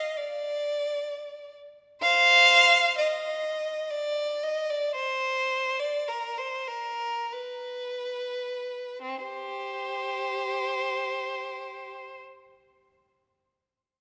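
A moderate concert hall reverb with a 2.3-second decay surrounds a single bowed violin, placed up front, whose rich, focused tone carries vibrato. This lonely, meditative classical fragment for unaccompanied violin moves in a free, rubato 3/4 in C minor, drifting between 28 and 66 BPM and slowing from 0.6 to 9.0 seconds before a new section begins. The violin ranges from C4 to F5 and plays until 12.2 seconds.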